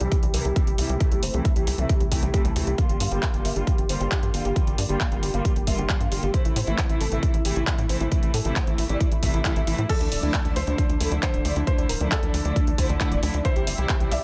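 A punchy, up-front electronic kick drives this soaring, euphoric uplifting trance excerpt at 135 BPM in a straight 4/4, with a layered dance kit adding crash, handclaps and hi-hat in a small room ambience while a tight, nasal sequencer bass plucks beneath everything with sidechain pumping. Huge, detuned supersaw chords carry the melody through a low-pass filter and digital delay, over a reedy, gut-string studio string section holding sustained chords under a filter sweep, the harmony moving through C, Gm7, Am and Dmadd9 in D minor. At 9.9 seconds a soft, felt-muted upright piano enters with an intimate second line touched by delay, and the mix stays dry and close.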